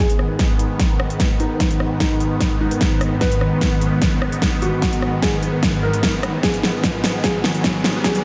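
A felt-muted upright piano opens this menacing, chaotic excerpt of heavy wobble dubstep in half-time, its soft, intimate melody carrying audible action noise, 12-bit sampler grit and tape echo over a lush, detuned supersaw pad that sustains slow-attack chords through a phaser with sidechain pumping. A punchy electronic kick and a big-room dance kit with a huge, up-front snare, crisp hats and rim clicks drive a continuous build-up with a drum fill and filter sweep, while a very quiet riser joins at 4.1 s. The dreamy mix is soaked in a lush hall reverb and thinned by a high-pass filter.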